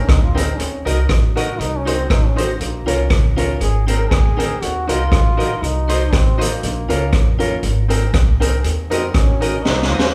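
A clear trombone takes a solo through this short ska excerpt, singing with a light vibrato in a pop style over a mischievous, driving groove at 119 BPM in 4/4 with a slight swing on the eighths. The street-band drum kit sits up front, its high-tuned snare, boomy kick, hi-hat and rim clicks carrying a rolled-off top, and it closes with a fill at 9.7 seconds. Beneath it, a pizzicato upright bass with gut strings gives a woody, thumpy, dark low end. A clear upright piano adds short stabs with audible action noise, while a clean, twangy electric guitar picks its accompaniment in the background through a tape echo. The harmony cycles through Abadd9, Ebm, Cdim and Bbm, and the band plays live together in one large studio with a moderate reverb that gives the whole a natural sense of space.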